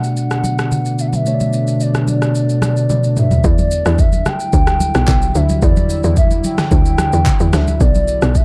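A late-night, soulful amapiano excerpt opens on a deep house drum kit with a deep kick and fat snare, a round sine sub bass and a mellow tine electric piano in the background under a filter sweep. A hollow, woody clarinet-like synth lead with chorus, vibrato and digital delay carries the melody, while a moody, detuned ambient pad with sidechain pumping and bright, damped congas sit behind. After an electric piano fill and a drum fill, the drop lands at 3.4 seconds: the sub bass and electric piano give way to a tight, punchy FM log drum bass up front, beside a tape-warm kit in a dark, dry production.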